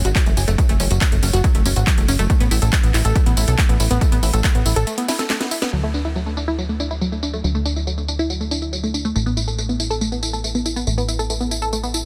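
Uplifting trance at 140 BPM in 4/4, euphoric and uplifting, where a lush, detuned unison pluck spins arpeggios through sidechain pumping and digital delay over a funky, up-front sawtooth bass, while a punchy electronic kick drives until 4.5 s and a techno kit of cracking snare, metallic low-pass-filtered hats, handclaps and tambourine carries through a short break and drum fill at 5.1 s, with chords moving from Asus2 to A5 in a dry, dense, heavily limited mix.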